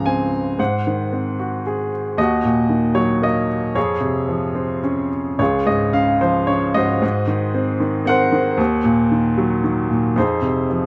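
A clear, intimate baby grand piano opens this relaxed, sunny piece of lyrical classical solo piano, a short cut from a longer work in D-flat major, moving in 3/4 at about 113 BPM with a flexible, rubato feel. Sitting up front in a light reverb, the natural-sounding instrument spans Db2 to Bb5, its long sustain letting chords such as Dbmaj7, Ab7 and Ebm ring out while the noise of its action stays audible. At 5.4 seconds the music moves into a second section that returns to Dbmaj7 and passes through Ab9 and Ebm before settling on Fm7 at 10.2 seconds.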